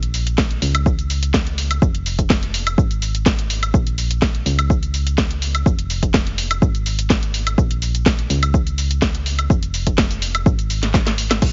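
A punchy analog kick drum sits up front in this euphoric, feel-good piano house cut, entering at 0.4 seconds and driving a straight 4/4 pulse at 125 BPM. Beneath it, a solid FM bass moves between F1 and Db2 with a round, mellow tone, a fast attack and a decaying tail, its level pumping against the kick through sidechain compression. A layered garage drum kit fills out the groove with a cracking snare, warm hi-hats, cabasa, woodblock and crash cymbal, given a roomy character from being re-recorded in a small space. A drum fill arrives at 10.9 seconds, just before this short section of a longer piece cuts off. The mix is dry and heavily compressed, with a radio-style sound whose top end stops at 7.5 kHz, and the whole track is tuned slightly sharp to A4 = 441 Hz.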